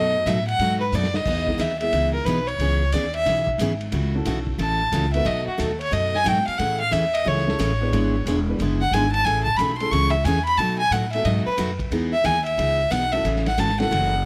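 Down-home and cheerful, this western swing country passage at 180 BPM in E major sets a smooth, lightly vibratoed fiddle soloing up front over a woody, thumpy pizzicato upright bass on gut strings, a bright, full-bodied picked dreadnought acoustic guitar, and a dark, mellow upright piano with audible action noise and short sustain, while a muffled, lo-fi vintage drum kit sits in the background from 0.3 seconds with a brief fill at 0.9 seconds, the swinging harmony moving through chords such as B7, Emaj7 and C#m9 under light reverb.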